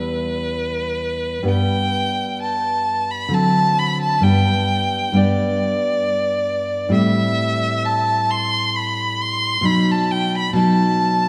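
A rubato feel in three carries this solemn, yearning fragment of a romantic duo, tuned slightly below standard pitch. A lone bowed violin sings the melody up front with a smooth, even, warm vibrato tone, while a thumb-plucked classical nylon-string guitar, warm with fresh strings, supports it from deep bass to its upper middle register. Both play throughout the 11.3 seconds, bathed in a wet concert hall reverb that lingers like a long sigh.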